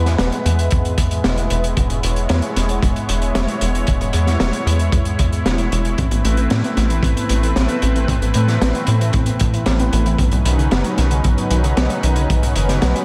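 Nostalgic and romantic, this synthwave passage moves at 114 BPM in a straight 4/4, set in E major with a tuning of A4 = 444 Hz. A lush, thick unison pad of detuned sawtooth voices holds airy sustained chords through chorus, phaser, shimmer reverb and sidechain pumping. Beneath it, a tight, punchy sequencer bass, also pumping, drives low and up front with a mellow filter pluck. The drums are a crunchy breakbeat kit of hi-hat and high-tuned snare with slapback echo, joined by a smooth, saturated kick, both dark, gritty and rolled-off on top. At 6.0 s a warbly, dusty lo-fi pluck slips in at the back, playing arpeggios bathed in chorus, delay, shimmer reverb and slapback echo, as the harmony moves from E to Amadd9 and then to Badd9 at 10.2 s. A moderate hall reverb gives the whole piece a big arena sound.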